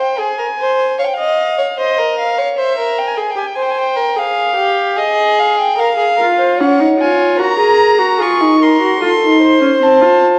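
Two bowed violins in period style, played up front with gut-string tone and light vibrato, open this serious, contemplative baroque-style fugue for string quartet in Bb minor at 75 BPM in 4/4. One carries the high melody and the other, more nasal, a second line beneath it. At 6.2 seconds a viola with a reedy, smooth-topped sound joins as accompaniment, all set in a recital hall's lingering reverb and colored by worn cassette tape with a warbling pitch drift in this short fragment of a longer piece.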